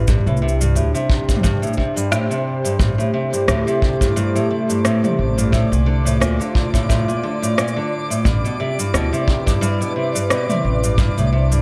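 A full-bodied, fingerpicked steel-string acoustic guitar sits up front with fresh strings and audible finger squeak, its arpeggios echoed by digital delay over a woody pizzicato upright bass and a punchy, roomy kick played with brushes in this delicate, autumnal folktronica excerpt at 88 BPM with a light 16th-note swing. A warbling, nostalgic lo-fi pad holds detuned sustained chords under chorus and reverb, moving from D7sus4/A to Bbmaj7/A and Cmaj7/A over an A bass. An overdriven electronic kit of cabasa, rim click and toms sounds re-recorded in a large room, and a faint, twinkling granular shimmer enters at 3.4 seconds, all within a dark, small-room production tuned to A4 = 444 Hz.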